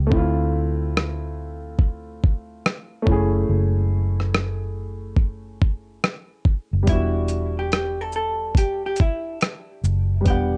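Reflective and nostalgic, this lo-fi hip hop excerpt moves at an unhurried 71 BPM in 4/4, with a 16th-note swing and an E dorian colour, cut from a longer piece. A gritty, overdriven sampler-style drum kit sits up front with a thumpy kick, hi-hat, rim click and shaker, compressed and loudest in the mix. Underneath, a dark, round, foam-muted electric bass holds the low end with a punchy, amped tone, while a mellow, woody upright piano with short sustain carries the accompaniment through cassette-tape grain and plate reverb. The chords drift from Dm7 to F#m7. After a fleeting touch at the very start, a clean, picked hollow-body jazz guitar returns at 6.9 seconds, as the harmony settles on Em7, with a brief melody under its own plate reverb. The whole recording has a light reverb and a tape-softened top end that gives it a dusty, lived-in sound.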